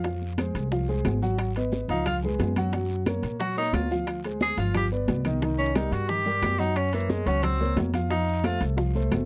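Afro-Cuban jazz with a driving, sophisticated mood, this short cut from a longer piece opens with a full percussion bed, growly pizzicato upright bass and an intimate grand piano comping up front, its action noise audible. Ringing metal-shelled timbales sit close and dry, while high-tuned, bright congas and round, low-tuned bongos played with soft hands stay in the background, alongside raspy guiro and grainy maracas. Very quiet woody claves join at 0.4 s. A clear, vintage-toned tenor saxophone enters at 1.9 s for a jazz-style solo with vibrato, taking the lead until 8.6 s. The harmony moves from Fm through Abm7, Db7 and Gbmaj7 to Dm7b5, G7 and Cm7 before settling on Gb and F. The sound is a dry, close 1970s-style studio recording with little reverb.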